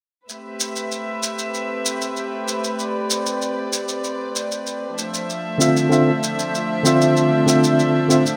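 A rough home-demo mix sits in a lush hall reverb, giving this wistful, smooth sunset chillout excerpt in A minor a dreamy, spacious glow at 96 BPM in a straight 4/4. Soft-attack bowed chamber strings hold floating, pure sustained chords over a layered electronic shaker that sounds tape-warm and re-recorded in a small room, while the harmony moves from Am9 to Dm9 at 5.0 seconds. At 5.6 seconds a worn, slightly out-of-tune tine electric piano steps up front with light overdrive and tape echo, heard as if played through built-in speakers.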